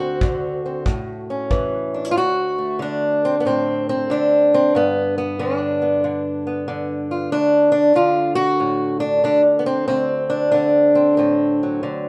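Recorded live in one room with light reverb, this rollicking, gritty acoustic country blues excerpt swings over D7, A and G as an up-front, fingerpicked old ladder-braced acoustic guitar with dark, woody, boxy old strings carries the melody, joined from 0.2 to 1.7 seconds by a tight, airy, polished kick drum played with brushes.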